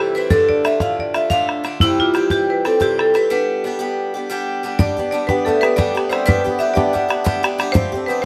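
Celtic folk in the form of a cheerful, bright slip jig in 9/8 at 121 BPM, set in G mixolydian and cut from a longer piece, where a marimba played with hard mallets carries the melody up front with a dark, percussive edge and plate reverb, over a boxy, picked swing-style acoustic guitar and a tight, damped bodhran sitting close and dry. A break arrives at 3.3 seconds as the chords move through Dm, C and G, and at 4.8 seconds a hammered dulcimer joins with a shimmering, ringing second line that carries through to the Fadd9 near the end. The whole sits in a moderate studio reverb.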